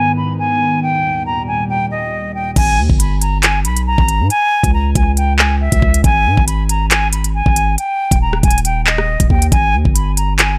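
A silver concert flute carries the melody across this tense, cold drill excerpt, its metallic, airy tone shaped by vibrato and tongued notes, softened by a low-pass filter and trailed by tape echo so it sounds distant yet sits forward in the mix. For the first 2.5 seconds it floats over a soft, breathy pad with a slow attack and long release, its chords thickened by chorus and filtered as they move from G#m to D# in G# harmonic minor. At 2.6 seconds a drill drum kit arrives with a knocking kick, crisp hi-hats, handclaps, rim clicks and a crash cymbal, electronic and up front, in a half-time feel at 138 BPM. A long 808-style bass enters with the drums, deep and sine-like, with a fast attack and mellow decay, sustaining through G#m and C#m and into stretches where the chords fall away. The room is dry, with little reverb.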